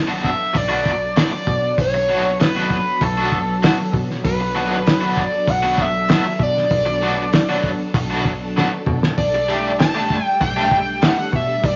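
Shimmering vintage string-machine chords with ensemble chorus and a round, foam-muted picked bass open this mysterious, hypnotic psychedelic rock excerpt at 97 BPM in B minor, joined at once by a crunchy, double-tracked overdriven guitar riff with tremolo, a screaming, sawtooth-and-square synth lead with vibrato and a filter sweep, and a cloth-damped, muffled drum kit with a fat snare that plays a fill at 8.6 seconds before the harmony shifts from Bm7 to Gsus2/B at 9.2 seconds, all in a wet studio reverb.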